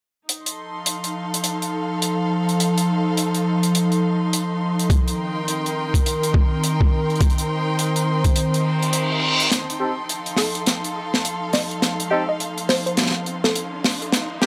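Funky and swaggering, this glitch hop excerpt struts along at 104 BPM in 4/4 with a 61% swing on the sixteenths, moving from F7 to Cm7 and back to F7. A tight, dry funk drum kit with a high-tuned snare and airy hi-hat sits up front from the start, alongside a rich, close chamber string section with vibrato, and a moment later a dark, warbling, tape-like pad enters with nostalgic lo-fi chords that carry chorus, 12-bit sampler grit and sidechain pumping. A thumpy, pitched-down electronic kick joins at 4.9 seconds, then drops out at 8.4 seconds as an electronic reverse cymbal and riser rise from the background. The second section at 9.5 seconds becomes a build-up with a drum fill, bringing in distant, roomy jazz-style horn stabs under a filter sweep. A woody, percussive wave-folded pluck adds a short melody with chorus, analog delay and its own filter sweep. The overall sound is dry and gritty, with light studio reverb.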